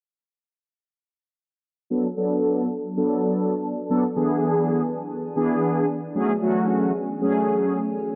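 A mellow synth brass, brassy and round with a detuned, warbling vintage edge under chorus and a filter sweep, opens at 1.9 seconds up front over Bm7, E7 and F#madd9 chords, joined at 2.7 seconds by a shimmering, ethereal ambient pad with a granular octave-up shimmer and phaser sitting in the background, all in a driving yet bittersweet pop excerpt in B dorian at 113 BPM, bathed in a lush hall reverb and a dark production.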